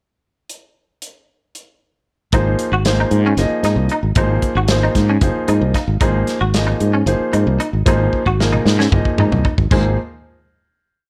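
Slick and bright, this short electric jazz fusion piece in 7/8 at 228 BPM opens with a drum-kit pickup of punchy kick and medium-tuned snare, then at 2.3 seconds fretless bass with a syncopated riff, clear grand piano playing quartal funk chords with audible action noise and a fill at 5.2 seconds, and twangy clean electric guitar with ensemble chorus on an ostinato join an Ab9 groove, which closes after a drum fill on an Abadd9 chord in light reverb.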